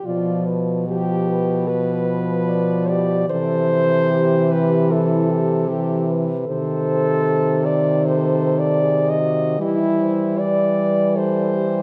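A lyrical, serene classical excerpt for horn quartet moves in an unhurried 4/4 with a rubato feel, its harmony settling from G7/B through C and a shaded Cm69 to C/E. A mellow French horn carries the melody from the background with light vibrato, a soft attack and a vintage tone, while a second mellow horn sings its line up front. Beneath them a dark horn with a smooth top gives accompaniment and a clear horn takes the bass, all four voices caught by close, detailed microphones in light reverb.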